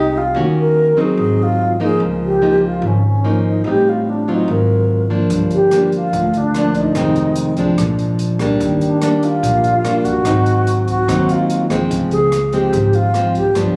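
Bossa nova at 145 BPM in an intimate, melancholic mood, this short excerpt sets a breathy alto flute with soft attack and expressive vibrato up front over fingerpicked classical nylon-string guitar and woody pizzicato upright bass, with an open jazz drum kit of hi-hat, rim click and boomy kick entering at 5.3 seconds, all captured on a phone in a room with a club-like reverb as chords move from Ebm7 through Ab7 and Db69 to a final Dbmaj7.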